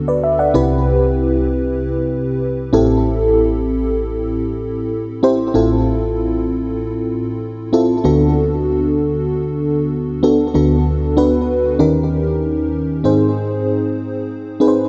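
A solo FM electric piano, layered with a soft pad, carries this glossy, romantic pop fragment from start to finish, cut from a longer piece. Its tone is dreamy and full-bodied with a dark, detuned shimmer, each note striking quickly and then decaying, while chorus, tremolo and delay give it a wavering sheen. Sitting up front in a lush hall reverb, it spans the low bass register up to the upper middle of the keyboard in a steady, straight four-beat feel. The harmony drifts through D6, Cmaj7, Am7 and Fmaj7/A before returning to D6, then a new passage at 10.5 seconds leans into an Eb7. The final section at 13.0 seconds settles onto Ab, ending the short fragment on a tender, unexpected shift of colour.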